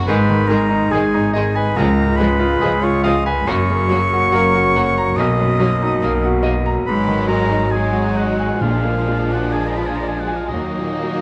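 A bright, brilliant concert grand piano carries the melody up front in this passionate, brooding romantic movement for piano and orchestra, its deep bass and short sustain set against a lush, rubato orchestral backdrop cut from a longer piece. A very quiet violin section also carries the melody while a second, more distant violin section, a smooth viola section, an even cello section and a warm double bass section fill in the harmony and bass alongside dark, roomy French horns. A clear, close-miked solo oboe and a clarinet in the background add second lines, and very quiet, dry timpani enter at 8.6 s, all in a light reverb with close, detailed sound.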